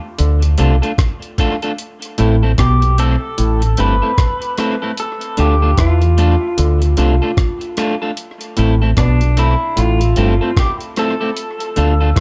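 A lightly reverberant, hypnotic roots reggae piece cut from a longer work moves at 75 BPM in A minor with a swung 16th-note feel, where a gritty, compressed, pitched-up sampler-style drum kit of thumpy kick, hi-hat and rim click sits up front beside a round, dark fingered dub bass, a mellow, stringy clav plays a low riff, a bright, twangy guitar at the edge of break-up accompanies with dub echo from 0.6 seconds, and from 2.6 seconds a lo-fi lead guitar through a small old amp carries the meditative melody with tube saturation, dub echo and plate reverb over alternating Dm and Am chords.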